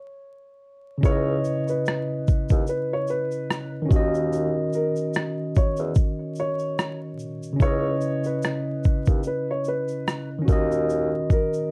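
Lo-fi hip hop at 73 BPM with a gentle 16th-note swing in C# dorian, reflective and nostalgic, this excerpt opens with a soft, dark, boxy felt-muted upright piano carrying the melody alongside a brief tine electric piano fill before, at 1.0 s, a clean tine electric piano played through built-in speakers, a mellow, distant bassoon bass with light vibrato, a compressed, pitched-down sampler-style drum kit with a thumpy kick and rim click up front, and a grainy, bright tube shaker settle in over C#m9 and D#m7, the mix wrapped in moderate studio reverb, warbly cassette pitch drift and vinyl crackle.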